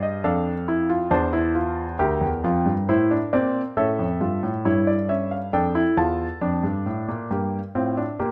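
A warm concert grand piano carries this short classical passage alone, a baroque-style four-part fugue cut from a longer piece that feels both contemplative and driving. Set in a steady 4/4 with a straight feel, the piano spans from D2 up to A5, its deep bass anchoring the texture while the instrument sits up front and intimate, with audible action noise adding a natural, close-up character. The harmony moves through Dm/F, Em7b5/D and A before settling on Dm, then shifts to Gm as a new section begins at 7.3 seconds. A moderate stone room reverb gives the sound a sense of space around the single instrument. The recording runs just over eight seconds.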